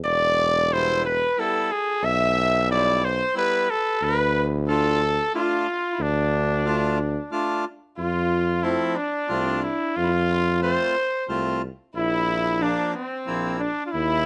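Close, detailed microphones and light reverb frame this festive yet bittersweet klezmer piece in 3/4, where a raspy, growling cornet with light vibrato leads up front over a warm tuba bass, a reedy, hollow accordion entering at 0.7 s, and a soft, floating sul tasto violin line in the background, as the harmony moves from Em and Dm to F at 8.0 s and Bb at 12.0 s.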